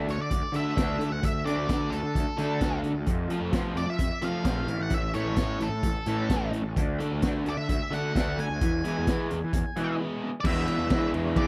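Indie rock at 130 BPM, carefree and wistful, built on a bright, crunchy overdriven guitar riff and a twangy, lo-fi second guitar with lush chorus set in the background, while a growly, punchy fuzz bass and a gritty, saturated garage drum kit with a high-tuned snare and boomy kick sit up front, a dark octave-fuzz lead carries the melody through distortion and tape echo, and after a brief break at 10.0 seconds the harmony lands on E7, all captured in a dry, close 1970s-style studio sound.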